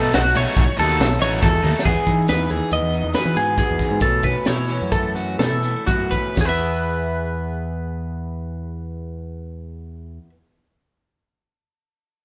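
A bright, twangy twelve-string electric guitar plays clean arpeggios up front through this wistful excerpt of math rock and midwest emo in 5/4, over a growling overdriven bass and a crisp, airy fusion kit with a high-tuned snare and punchy kick. A double-tracked overdriven guitar riff opens the excerpt, and after a drum fill at 1.6 seconds, a slightly broken-up guitar through a small old amp takes over the accompaniment at 1.9 seconds. The band slows down from 2.7 to 6.4 seconds, settling onto an E chord in a moderate studio reverb as the drums stop at 6.5 seconds.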